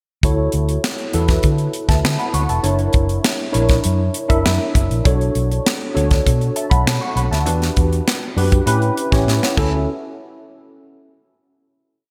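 A crisp sixteenth-note studio groove in straight 4/4 drives this short, breezy and upbeat piece of polished 1980s jazz-funk pop. The tight drum kit sits up front with a high-tuned snare, a tight kick, hi-hat and crash cymbal, its dry, airy sound framed by gated reverb, and it closes with a fill at 9.3 seconds. Beneath it, a dark, foam-muted fingered electric bass plays an agile, syncopated line with a round, amped tone. An up-front tine electric piano, worn and slightly out of tune yet clean and direct, pushes rootless chord voicings through an ensemble chorus, adding short fills as the harmony moves from Dmaj9 through F#7b13, Bm7, Em9 and A7 back to Dmaj9. A final hit arrives at 9.9 seconds and rings out in a moderate plate reverb, capping a bright, 1980s-style digital production.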